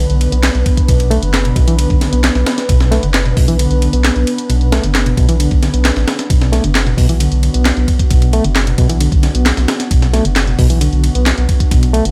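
Breakbeat at 133 BPM in B minor, gritty and funky, this short cut from a longer piece rests on a single Bm chord. A compressed, sampler-style break kit with a thumpy kick and high-tuned snare sits up front beside a deep, thick sub bass with tube saturation, while a dry analog drum machine adds handclaps and hi-hat from 0.1 seconds. A reedy electric piano riff with fast tremolo and dub echo plays over a warbling, lo-fi pad of detuned sustained chords that carries chorus, 12-bit sampler grit and sidechain pumping, in a close mix with little room reverb.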